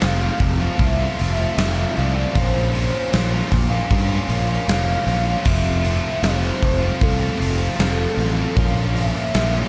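Shoegaze-tinged dream-pop rock at a steady 77 BPM in F major, this wistful, hazy fragment of a longer piece sets a velvety sawtooth synth lead with chorus, vibrato and tape echo over a biting, double-tracked overdriven guitar riff, a dark, round fuzz bass and a huge arena drum kit with bright cymbals and a punchy kick, all four running together from 0.0 s as the chords drift from Fmaj7 to Bbmadd9 and back before settling on Bbm at 8.6 s.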